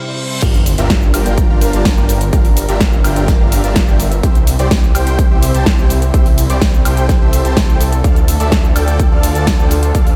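Anthemic and powerful, this excerpt of festival progressive house moves at 126 BPM in a straight 4/4, opening with a brief break where a reverse cymbal and sub drop sit in the background before the drop lands at 0.4 seconds with an impact. A lush, slow-attack unison pad holds sustained chords behind everything, treated with chorus and sidechain pumping, while the harmony moves from Gm7 to C to Dm. Over it, a huge, dense supersaw riff carries the lead, its detuned, compressed tone given vibrato, a cassette-tape colour, tape echo and the same pumping. Underneath, a thick, saturated detuned saw bass with chorus fills the low end. The drums pair a punchy, up-front electronic kick with a layered big-room kit of huge snare, metallic hats, crash and ride cymbals, shaker and woodblock, both re-recorded in a small room. A light reverb and digital ambience frame the mix.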